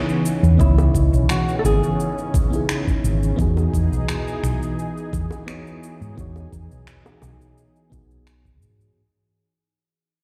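A round, dark hollow-body bass anchors this wistful sunset chillout excerpt, up front beside a knocking, tape-warm electronic kick, while a boxy, thumb-plucked flamenco guitar with digital delay carries the melody only until 3.0 s over a soft, warbling FM electric piano, a thick detuned sawtooth pad with chorus, electronic shaker and finger snaps, and tight, high-tuned bongos in the background; a very quiet electronic impact opens the excerpt as the whole passage fades out in a large, reverberant room.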